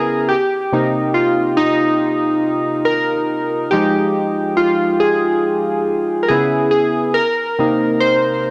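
A solo analog synth keyboard carries this short, reflective hip hop excerpt, its round, pulse-and-sawtooth tone sitting up front with a fast attack and decaying notes. Ring modulation and a filter sweep colour the sound, while chorus and a low-pass filter give it a hazy sheen that still lets a bright edge through. The tempo is a slow 70 BPM in 4/4 with a 57% swing on the sixteenths, in C minor, and the keys range from C3 to C5. From 0.3 seconds, the harmony moves from Cm7 to Fm9 at 3.7 seconds, then to Dbm7 before resolving back to Cm7 at 7.2 seconds, holding there to the close at 8.5 seconds. A wet studio reverb with a short tail surrounds the instrument, adding a soft sense of space to this fragment cut from a longer piece.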